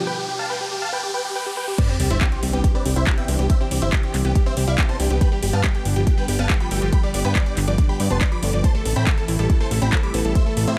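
Uplifting and euphoric, this uplifting trance excerpt at 140 BPM in C major opens with a short build-up and break, where a riser and sub drop swell under an analog pluck arpeggio carrying a filter sweep, a huge detuned supersaw lead melody with delay, and a silky, string-like analog string pad holding background chords over G. At 1.8 seconds the drop lands with an impact, as a punchy, up-front electronic kick and a house kit with metallic hats, handclaps and crash cymbal enter, followed at 2.0 seconds by a fat, thick analog bass. The lead, pad, pluck and bass pump with sidechain through chords moving from Cadd9 to G to Am, in a dry mix.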